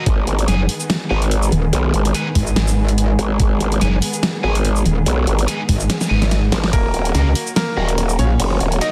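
A swung, half-time dubstep groove drives this chaotic, heavy fragment of a longer piece, with an electronic kick that knocks hard under a layered drum kit of huge snare, bright hats, ride cymbal and shaker, both carrying a tape-warm sheen. Two aggressive basses sit up front and dominate the mix: a growling, formant-filtered bass with chorus and overdrive, and a louder metallic FM wobble bass, also saturated and chorused. Behind them, a lush bowed string section holds sustained chords with vibrato, pumped by sidechain and darkened by a low-pass filter, while a double-tracked, overdriven electric guitar jabs picked stabs through dub echo. A drum fill at 5.9 s leads into a shift from Abm to Ebm at 6.7 s, where a brilliant, polished grand piano enters with a short-sustained melody trailed by dub echo, and the kick drops out at 6.8 s. Light reverb and a dense, heavily limited modern master keep the whole fragment pressed and loud.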